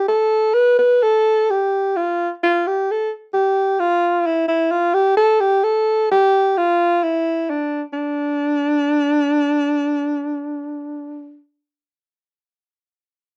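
This medieval piece in D dorian moves at a driving 130 BPM in 3/4 with a straight feel, its mood mysterious and tuned to A4 = 437 Hz. A warm alto saxophone plays solo and up front throughout the 11.4 seconds, staying between D4 and B4 with jazz-style vibrato, scooped notes and a smooth top, with a change of section at 7.9 seconds. The sound has light reverb and the character of a home cassette recording, and this short passage is cut from a longer piece.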